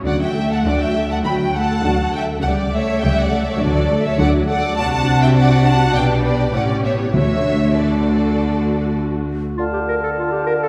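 Bowed violin sections sing a graceful, cheerful melody and a lush, vibrato-rich second line over expressive violas and smooth, even cellos and double basses in this quick classical-period orchestral fragment, with very quiet, hard-mallet timpani entering at 3.6 s before the strings give way at 9.6 s to a brief turn to D minor for clear clarinet, airy flute, mellow oboe and bassoon, all set in a reverberant concert hall heard from further back.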